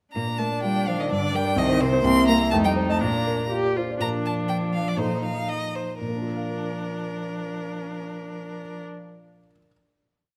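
In a rubato 2/4 at 112-128 BPM, this cheerful, spirited classical-period movement for piano quartet in Bb major carries a clear, smooth violin melody up front, while the viola adds independent inner lines, chords in the tune's rhythm and answers at phrase ends, the expressive cello doubles the tune at the octave, and the deep-bassed grand piano ripples and strikes block chords, slowing from 3.5 s into a brief coda and a final chord, after which the piano continues alone until 9.7 s in a moderate recital hall reverb captured with close, detailed microphones.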